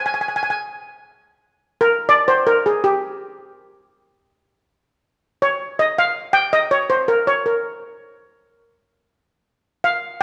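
A moderate scoring-stage reverb gives this festive, bouncy calypso fragment an airy halo, with a lone steel pan set up front and mid-forward in the mix. The double seconds pan, struck with medium rubber sticks, rings out metallic and shimmering across a range from G4 to Ab5. It carries the whole excerpt by itself, taking its solo from 1.0 seconds through to the cut at 10.2 seconds.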